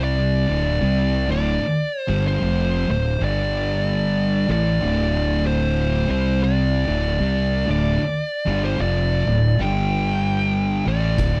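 A brooding, ominous slice of stoner and doom metal opens with everything but the drums at once: a compressed, distorted fuzz lead guitar sits up front carrying the melody, with a touch of slapback echo on its picked line. Beneath it, two thick fuzz guitars grind out the riff in the background, one dark and the other warm, both picked and distorted. A growly, overdriven fingered bass with a bright, direct amped tone sits up front in the low end. The harmony circles through D minor and G5, D5 and C5 power chords over a swung 4/4 feel. Only at 11.2 s does an oversized, low-tuned acoustic drum kit crash in with a punchy kick and dark cymbals, its gritty, saturated sound pumping in a bright stone room just as the excerpt cuts off from the longer piece.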